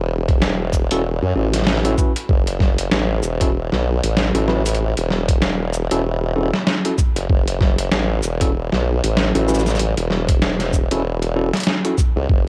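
A swung 96 BPM glitch hop rhythm in F# minor opens this gritty, swaggering excerpt, driven by a thumpy electronic kick and a compressed boom bap sampler-style kit of hi-hat, shaker and medium-tuned snare, both up front with cassette tape coloring, while a wobbling sawtooth-and-sine formant-sweep bass with chorus sustains from E1 to F#2 over a single F#m7 chord and a clean tine electric piano enters at 0.9 seconds with stabs carrying sidechain pumping, cassette tape and analog delay in a light digital ambience.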